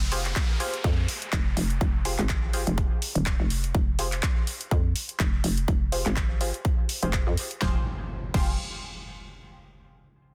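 A hollow, knocking FM bass anchors this gritty, swaggering bass house fragment, its bouncy, fast-attack notes sitting up front with overdrive and sidechain pumping across a low register from Eb1 to F2. An overdriven, punchy electronic kick sits just as far forward, joined by a big-room dance kit of crash cymbal, handclaps, hi-hat and a huge snare, both treated with overdrive and studio reverb over a swung sixteenth-note feel. Higher up, a nasal, band-passed sawtooth chord stab with detuned, ring-modulated colour and a short decay outlines an Fmadd9 chord through phaser, tape echo and its own sidechain pumping. An electronic downlifter and impact open the clip and return at 7.8 seconds as the music moves into a new section at 7.6 seconds. The dense, heavily limited master keeps the sound dry and tight, and the piece is cut from a longer track.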